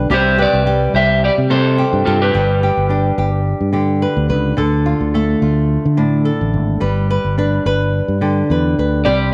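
Riding a lightly swung sixteenth-note feel at 107 BPM in 4/4, this carefree, joyful highlife guitar band snippet in C major sets a warm, fingerpicked flamenco guitar and a round, dark fingered electric bass up front over a C, G, Dm, G progression, while a slightly broken-up, picked electric guitar melody, bathed in spring reverb and slapback echo, enters at 0.1 seconds, drops out at 3.3 seconds and returns at 9.1 seconds, all within a light studio reverb.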